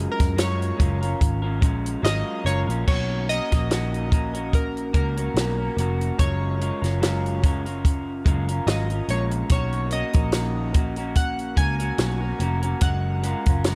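This laid-back, nostalgic indie and bedroom pop piece moves at 72 BPM in 4/4 with a light sixteenth-note swing, drifting between F#maj9 and Bmaj9 chords. Glossy, detuned retro synth keys carry the melody with pulse-width and sawtooth tones, a filter sweep, chorus and analog delay, and they take a featured solo in the opening 2.9 seconds. Beneath them, a slightly broken-up, lo-fi electric guitar through a small old amp adds a fingered accompaniment with subtle chorus and vibrato, while a round, punchy foam-muted bass and a dry, up-front cocktail drum kit with a high-tuned snare, tight kick and dark cymbals (from 0.2 seconds) anchor the groove in a studio reverb.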